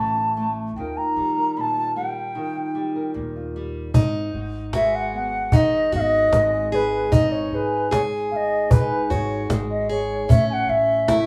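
A straight 4/4 pulse at 76 BPM carries this melancholic, wistful acoustic folk piece in G# phrygian, cut from a longer performance by a small band. A thumb-plucked nylon-string guitar and a woody, pizzicato upright bass open together from the start, moving from A to D#add9 under a pure, up-front wooden flute that sings with vibrato, a crisp attack and lifted highs. At 3.9 seconds the flute takes a solo as the harmony shifts to G#m7, and a cajon enters close and soft-handed with faint snares, alongside a picked plugged-in steel-string acoustic guitar playing arpeggios with audible finger squeak. The chords pass through G#madd11 at 7.1 seconds and return to A at 10.3 seconds. Plate reverb lends sheen to the flute and both guitars, while the whole mix has the rough, intimate feel of a home demo in a small, reverberant room.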